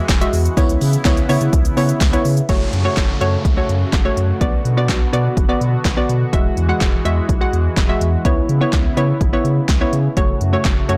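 Dance-pop at 125 BPM in F# minor, this energetic, driving excerpt pairs a punchy deep house drum kit of kick, snare, handclaps, smooth hi-hat and shaker with a deep, saturated sub bass, a hollow, bouncy square-wave pluck with chorus, and a shimmering, retro pulse-width pad, all three sidechain-pumping, while a faint jingly tambourine plays only until 2.1 seconds and an electronic downlifter runs from 2.5 to 6.3 seconds over chords moving from Eadd9 and C#m7 to F#m and Bm, the whole recording blown-out and overdriven in a digital ambience.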